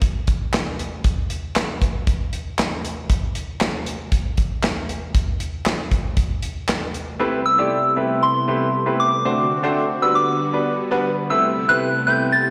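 Early-eighties boogie funk at 117 BPM in A dorian, late-night and funky, this excerpt opens with a dark, tight studio drum kit of kick, snare, hi-hat and handclaps playing alone, with a rolled-off top and a small-room feel. At 7.2 seconds the drums stop and a clear, open concert grand piano enters with slapback echo, alongside a brassy, detuned sawtooth pad with chorus, vibrato and a moving notch, sustaining chords through Am9, D7 and Gmaj7. A pure, gentle FM bell carries the melody high above them from 7.5 seconds, its decaying notes treated with chorus and slapback echo, all heard as a live gig through the venue's PA with recital-hall reverb.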